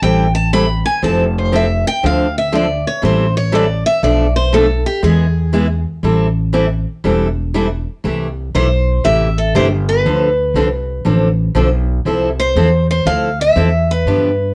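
A boxy, parlour-style picked steel-string acoustic guitar carries the melody up front, taking a solo through the first 8.0 seconds of this fiery, bittersweet gypsy-jazz swing fragment cut from a longer piece. A second, bright concert-style picked steel-string guitar plays the accompaniment alongside a woody, thumpy pizzicato upright bass on gut strings, tinged with tube saturation. At 8.0 seconds the tune moves into a new section, and a light reverb and the worn, warbling pitch drift of old cassette tape give the whole recording its aged character.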